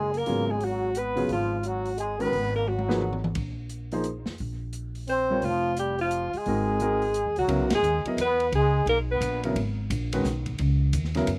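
Dry, with an outdoor openness and little reverb, this brief modal jazz excerpt swings in 3/4 at 174 BPM with a searching, intense mood, as a mellow, subtoned alto saxophone with vibrato carries the melody over a plunger-muted trombone's brilliant, punchy wah-wah second line, a woody pizzicato upright bass on gut strings, an intimate concert grand piano with audible action noise, and a dark, smooth drum kit that plays a fill at 2.7 seconds before the key shifts from G# dorian to C# dorian and the band hits an accent at 7.7 seconds, with the horns dropping out at 9.4 seconds.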